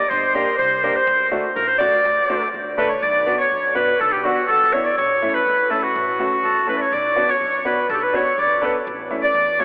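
A straight two-beat pulse drives this festive yet bittersweet klezmer passage, cut from a longer piece. The clarinet carries the melody from the outset with a soft attack and a classical touch, up front yet distant and roomy, while a reedy, full accordion shares the same register as a second line; both parts carry an analog delay. A pizzicato upright bass with steel strings enters at 0.1 seconds, woody and warm but set far back in the mix, and a polished, present upright piano joins at 0.3 seconds with accompaniment. The harmony moves from G minor and D in the opening section to a second section at 3.0 seconds that alternates B minor and A. The whole mix is soaked in a dreamy cathedral reverb and filtered to a telephone-like sound, giving the dance tune a hazy, faraway character.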